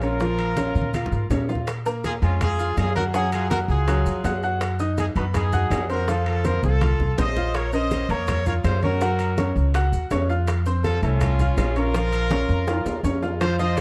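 A growly, woody upright bass sits up front in this danceable, driving salsa, with a brilliant, polished upright piano in accompaniment and a tight trumpet section with light vibrato and plate reverb and tape echo carrying the melody, while thin-skinned congas, high-tuned bongos, distant ringing timbales and grainy maracas churn in the background.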